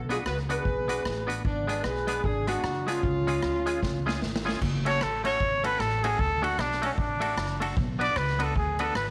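Driving and energetic, this swung ska fragment at 152 BPM in F# harmonic minor rides on a thumpy, woody upright bass and a street-band drum kit with a boomy kick and dark cymbals, while a bright, clean semi-hollow electric guitar with tremolo accompanies. A tight, up-front horn section carries the melody until 4.2 seconds, and a drum fill begins at 3.8 seconds. A breathy, whispered trumpet with vintage vibrato then enters at 4.9 seconds for an intimate solo, set in light studio reverb.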